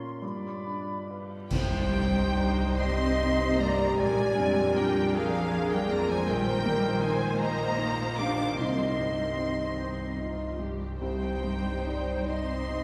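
This sorrowful, bittersweet orchestral film cue in C minor opens with a pure-toned flute group, a clear grand piano with audible action noise, a ringing, very quiet harp, and brief touches from a warm solo clarinet and a distant, roomy oboe. At 1.5 seconds, with a band accent, the strings enter in a rubato 6/8 at around 45-54 BPM. A warm, vibrato-laden violin section carries the melody over a second, richer violin line, lush violas, focused cellos and double basses, while bright cymbals, concert bass drum and very quiet timpani mark the entrance. From 2.8 seconds a mellow French horn section sustains chords within the texture, and a generous scoring-stage reverb sets the orchestra back in the room, with faint compression artefacts.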